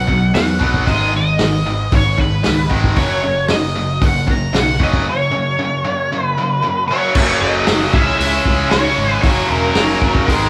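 Recorded as a live band in one room with moderate large-studio reverb, this brooding, driving classic rock fragment at 115 BPM puts a dark, wah-inflected octave-fuzz lead guitar melody up front over a tight, bright, double-tracked distorted guitar riff, a growly picked electric bass, a muffled, lo-fi vintage drum kit with a tight kick and rolled-off top, and a very quiet, thick tonewheel organ holding sustained chords through a slow rotary speaker, before an overdriven, double-tracked second guitar riff slips into the background at 7.1 seconds as the chords move from B add9 through G-sharp minor and F-sharp to C-sharp minor.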